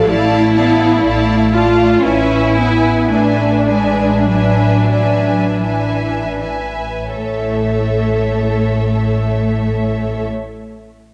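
Warm and lyrical, this slow romantic movement for string orchestra unfolds in A major at 37 to 64 BPM in 4/4, breathing with rubato and slowing down through its first 7.1 seconds. The first violins carry the melody high between E5 and A5 with a smooth, even vibrato tone, while a second violin section sings a lush, focused inner line beneath. The violas sit up front with a rich, bowed accompaniment, and the cellos anchor the bass with light vibrato. The double basses join at 0.1 s on a low, prominent A1. The harmony moves from Dm/A to E7/A before settling on A at 7.1 s, and a wet scoring-stage reverb within a dark, warm production gives this short passage a spacious, enveloping sound.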